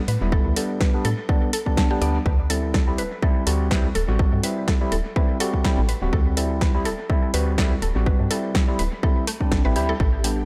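Deep house with a hypnotic, late-night mood, this short cut from a longer piece rides a swung groove. An overdriven electronic kick sits up front with a punchy, roomy weight, joined by a dry analog drum machine supplying hi-hat and a punchy, driven snare that trails into dub echo. A woody, round FM bass with a dark, decaying tone anchors the low end, while a barky, gritty tine electric piano, overdriven through a combo amp, plays up-front stabs colored by phaser, sidechain pumping and dub echo over A9sus4 moving to D9sus4. A bright, mallet-like FM pluck spins arpeggios through chorus, phaser and echo, pumping against the kick. At 10.0 seconds a silky, vintage string machine slips in far behind the mix, its mellow ensemble chorus adding a faint sustained texture in an echo-heavy mix with light reverb.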